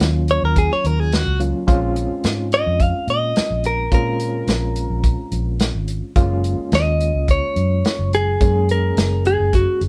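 Recorded live by a band in one room with light reverb, this brooding, mournful straight-eighth soul blues excerpt in Bb minor moves at 107 BPM, as a bright, compressed clean electric guitar carries the melody from 0.3 seconds over a gritty, barky electric piano with fast tremolo, a dark, round muted bass and a punchy, rolled-off soul drum kit of hi-hat, kick and snare, all moving through Ebm9, Bbm9 and Gbmaj7.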